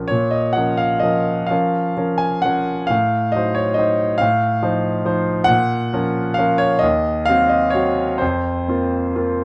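Wistful and melancholic, this short cut from a longer romantic nocturne in B-flat minor features a solo concert grand piano, clear and up front with deep bass and long sustain, moving in a slow, rubato 6/8 at roughly 42-47 dotted-quarter beats per minute through darkened harmonies like Adim7 and F7/A before settling on Fsus4 at 8.2 seconds, all in a dark, warm production with light reverb.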